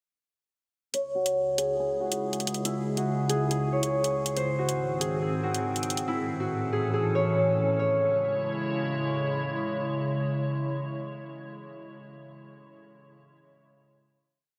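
A thumb-plucked Celtic harp rings up front with a looping melody in C# harmonic minor, repeated like a sampled loop through a low-pass filter and analog delay from 0.9 to 9.7 seconds, while a glassy, ethereal FM pad sustains slow-attack chords with ensemble chorus from 1.5 seconds to the close. This ominous, cold drill piece moves at 140 BPM in a half-time feel, with bright, overdriven electronic hi-hats skipping and rolling until 6.1 seconds across a breakdown marked by a filter sweep, moving through C#m, G# and A. The dreamy mix is soaked in a huge ambient reverb, and the piece ends on a lingering C#m final chord from 7.8 seconds.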